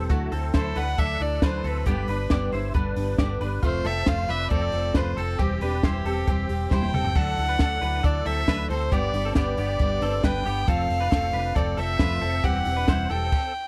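Bright and nostalgic, this short cut of jangly indie pop at 136 BPM in G major sets a floating, airy-bowed violin melody entering at 0.6 seconds over picked steel-string acoustic guitar with finger squeak, twangy direct electric guitar arpeggios with ensemble chorus, a round foam-muted fingered bass and a small cocktail kit with a high-tuned snare and punchy kick, whose fill at 6.7 seconds leads into the second section over a recurring Dadd9, G, F, C/E progression, all in a dry, close 1970s-style studio sound with tape echo on the violin.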